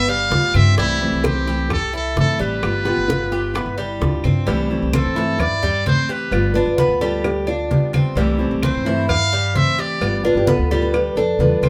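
A straight 4/4 Cuban son and guajira groove runs at 130 BPM in C major, driven by thick-skinned, low-tuned congas played up close with hard hands, while tight, high-tuned bongos and cowbell and woody claves sit dry in the background, giving a sunny mood. Up front, a buzzy, breathy trumpet with a metal mute carries the jazz-style melody with vibrato, over a thumpy pizzicato gut-string upright bass, metallic double-stringed Cuban tres arpeggios and a full-bodied fingerpicked dreadnought steel-string guitar, as the harmony rocks between G7 and C6. A dark fingerpicked flamenco guitar adds a second line from 2.8 s, a drum fill at 4.2 s leads into the next section, and the band plays live in one room with moderate studio reverb in this passage cut from a longer piece.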